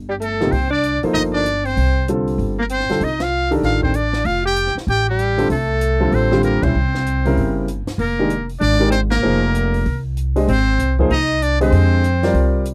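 Modal jazz at a brisk, swinging 193 BPM, this intense, searching passage from a longer piece moves from C dorian to F dorian at 8.0 s, with band accents at 3.2, 6.6 and 9.1 seconds. A buzzy, brilliant trumpet with metal mute carries the melody with light vibrato and scooped notes, while a breathy alto saxophone in subtone plays a second line. Underneath, a woody, thumpy pizzicato upright bass and a warm baby grand piano sit up front, with a compact cocktail drum kit of dark cymbals, high-tuned snare and punchy kick further back, all captured in a dry, close 1970s-style studio sound.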